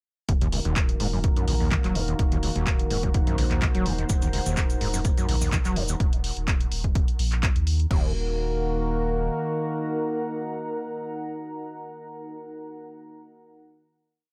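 A lightly reverberant mix sets a hypnotic, trippy acid house groove in Eb dorian at 126 BPM and a gently swung 4/4, built on a dry four-on-the-floor electronic kick and a punchy analog drum machine playing hi-hats, handclaps and crash. A squelchy, gritty, distorted acid bass line with accents and slides rides over a round sine sub bass, while a detuned, warbling vintage pad holds sustained chords with sidechain pumping. A moody ambient pad with a sub octave fades in from 2.4 seconds, a grainy cabasa adds hand-played sixteenths for a short stretch, and after the drums stop at 8.0 seconds the pads and sub bass sustain a final chord.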